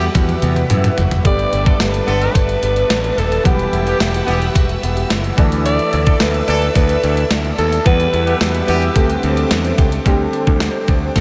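This dreamy, reverb-soaked mix sits in a huge ambient space with a long decay. It is an uplifting, nostalgic slice of 1980s-style pop at 109 BPM in a straight 4/4, tuned to A4 = 445 Hz and cut from a longer piece. An up-front 12-bit digital drum machine, with a thumpy kick, medium-tuned snare, hi-hat, tambourine and toms, opens with a fill at 0.1 seconds. A bright, picked electric bass sits up front beside it. Behind them, a clear concert grand piano with deep lows and analog chorus plays accompaniment, a swirling detuned sawtooth pad holds sustained chords through phaser and chorus, and a compressed clean electric guitar picks a riff in diffuse delay. A raspy, gritty alto saxophone carries the melody with vibrato and scooped notes, while a very quiet, distant, warm horn section adds stabs until 8.9 seconds and the sax drops out at 9.7 seconds, over chords moving among Emadd9, Gadd9, Dsus2 and D7sus4.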